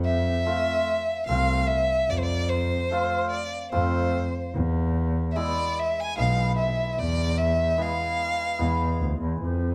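Festive yet bittersweet, this short klezmer cut in 3/4 at 74 BPM, tuned to A4 = 439 Hz, sets a rich, bowed single violin with vibrato and plate reverb up front on the melody over a warm, smooth-topped bowed double bass, while a bright, shimmering hammered dulcimer joins at 0.5 seconds with ringing accompaniment, the harmony moving from F to E at 4.6 seconds within a dark production touched by light reverb.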